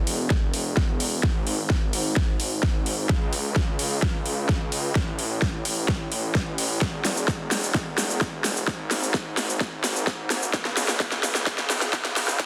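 A straight 4/4 pulse at 129 BPM drives this euphoric, emotional festival progressive house build-up in C# minor, cut from a longer piece, with a drum fill and filter sweep running through all 12.5 seconds. A punchy, overdriven electronic kick enters at 0.3 s, joining a big-room dance kit of huge snare, metallic hi-hats and cabasa, while a thick, menacing detuned saw bass pumps with sidechain between E1 and C#2. The dense, heavily limited master carries only light reverb, keeping the drums and the saturated bass close and forceful.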